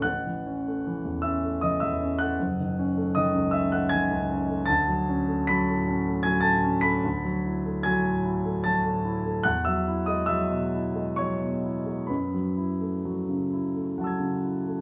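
A warm grand piano carries this brief impressionist classical excerpt alone, its tone present and polished, with long sustain that lets each harmony hang in the air. The mood is wistful and nocturnal, moving in a gentle three-beat metre with a freely breathing rubato feel. The piano sits up front, spanning a broad register from deep bass notes up into the high treble. Lush, colourful chords drift past one another, including a shimmering major seventh with a raised eleventh and a soft added-ninth sonority before settling on a rich minor eleventh near 12.1 seconds. Light reverb and a small room ambience lend the sound an intimate, close feel, and the passage is clearly cut from a longer piece.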